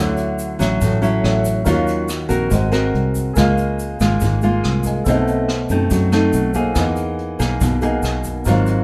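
Breezy and romantic, this short bossa nova clip, cut from a longer piece, centres on an up-front, fingerpicked nylon-string guitar over a round, foam-muted fingered electric bass, with a natural-sounding concert grand piano adding high accompaniment and a brief fill at 6.1 seconds. From 0.2 seconds a distant, roomy brush drum kit plays hi-hat, rim click and a boomy kick, while a grainy, bright tube shaker sits close and dry in the background. The band is heard from further back in a moderate studio reverb as the harmony drifts through lush extended chords such as Dmaj9, Ebm9 and Emaj9#11.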